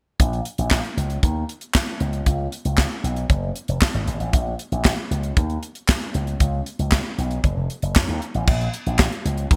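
A bright 1980s-style digital production with light reverb frames this danceable, slick early-eighties boogie funk excerpt in Bb minor at 116 BPM, where an up-front, amped electric slap bass run through an envelope filter and a tight, polished, dry yet airy acoustic funk kit with gated reverb, featuring a tight kick, medium-tuned snare, hi-hat, handclaps and crash cymbal, play together from 0.2 seconds through to 9.6 seconds, carrying on as a new section arrives at 8.5 seconds.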